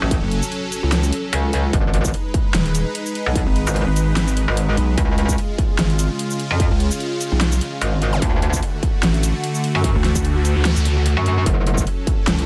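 An impact opens this menacing, chaotic heavy wobble dubstep excerpt at 148 BPM in a swung half-time feel, as a lush, detuned supersaw pad with phaser and sidechain pumping holds sustained chords under a metallic, distorted wobble bass that sits up front with chorus and overdrive. An electronic kick drum, distorted and tape-warm, and a dubstep kit of huge snare, bright hats and shaker join with a heavy, saturated pulsing pluck wobble bass, all moving through F#m, G#m, C# and D in F# harmonic minor. Zaps and a noise sweep from 10.2 to 11.5 seconds sit in the background of a dry, loud mix.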